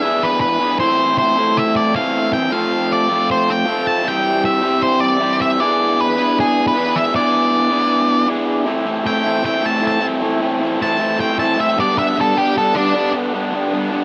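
Cool and bittersweet, this rock piece, cut from a longer work, pairs a raw, lo-fi garage guitar riff, overdriven, picked and double-tracked up front, with a dark octave-fuzz lead that carries the melody through distortion and analog delay. The chords move from E7 through Am, F and C before the lead breaks into a solo at 8.7 seconds over Am7 and G, dropping out at 13.1 seconds while the riff plays on. A moderate studio reverb and dark production give the sound a shadowy depth.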